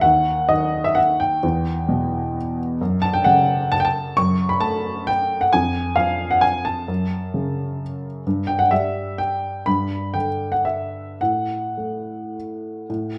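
A rubato waltz in 3/4 sways between 102 and 142 BPM in this brief classical excerpt, its playful, graceful mood carried by a solo upright piano that spans Eb2 to C#6 and moves through E minor, F# minor and G major. The piano sits up front with an intimate, woody, slightly detuned character, and the audible action noise lends it a natural, close feel. Moderate reverb from a large studio room surrounds the instrument.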